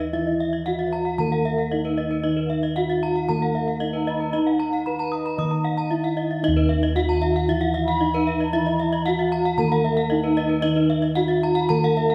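A straight 4/4 pulse at 114 BPM carries this ceremonial, shimmering gamelan passage in Eb pelog, cut from a longer piece and set in a reverberant recital hall. A mellow, padded-mallet bronze metallophone leads the melody over a softer, vintage-toned metallophone accompaniment in a lower register, while dark, round bossed gongs with a beating tone hold the bass. Two horn-mallet metallophones spin arpeggios above, one bright and airy and the other boxy, joining at 0.3 s, their paired tuning giving a shimmer, and a breathy low xiao with vibrato and rolled-off highs drifts in the background as a second line.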